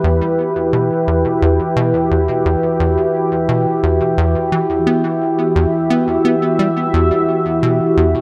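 A bright, detuned resonant pad and a punchy, wave-folded sequencer bass begin together, the pad sustaining evolving, chorused chords through the whole 8.2 seconds, opening on Emadd9, while the bass drives a plucky, fast-attack riff treated with tape echo. This is cosmic, expansive ambient space music in E minor at 87 BPM in a straight 4/4, a fragment cut from a longer piece. A wet plate reverb with a 2.5-second tail surrounds both parts, keeping the up-front synths floating in a spacious haze.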